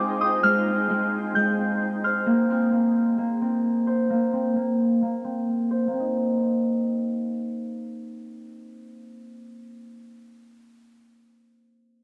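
Heard through the soft haze of cassette tape and a moderate studio room, this spacious, ethereal half-time hip hop fragment opens with a filter sweep over its first 5.9 seconds. A pure, mellow FM synth bell with chorus, phaser, low-pass filtering and analog delay sings a brief high melody that stops at 2.3 seconds. A bright, ringing fingerpicked Celtic harp, up front and touched by its own low-pass filter and delay, carries the arpeggios through Abmaj7, Bbsus2 and Cm7 until 9.8 seconds.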